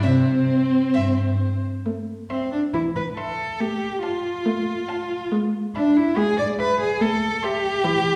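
Opening on a C chord before turning to A minor, this urgent, stormy excerpt of a quick classical-period string quartet movement in 4/4 moves with a rubato feel around 129-146 BPM, as a close, up-front cello carries a rich, smooth bass, a distant viola adds expressive accompaniment with vibrato and portamento, and two warm violins sit in the background, the first singing the high melody with vibrato and portamento while the second holds an even, distant line, all set back in a wet recital hall, with the violins stopping at 7.7 seconds while the viola and cello play on to 8.2 seconds.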